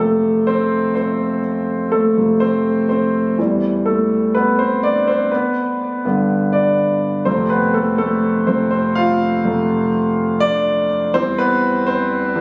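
Warm and hopeful, this short pop excerpt is carried by a lone concert grand piano in a straight 4/4, ranging from E2 to F5 with deep bass, long sustain and audible action noise that keeps it intimate and up front, touched by tape echo. The chords move from F through Cadd9/E and G, and a second passage begins at 7.3 seconds, returning to F before settling on C/E at 11.1 seconds. A plate reverb and the ambience of a club, captured on a phone in the room with compression, give the polished instrument a live, roomy frame.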